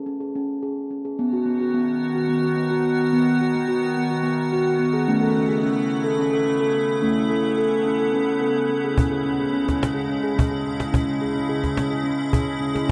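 Gentle and meditative, this excerpt of world-style tuned percussion moves at 215 BPM in eighths in a straight 7/8, tuned to A4 = 442 Hz. A round, pure steel tongue drum struck with rubber mallets rings out arpeggios from the start, and at 1.5 s an icy, crystalline glass pad enters with slow-blooming sustained chords, shimmering with chorus and its own reverb, over a progression from C#5 through B and A to C#m. At 9.0 s a snappy, close acoustic cajon joins, all set in a dark church reverb that lingers for 3.6 seconds.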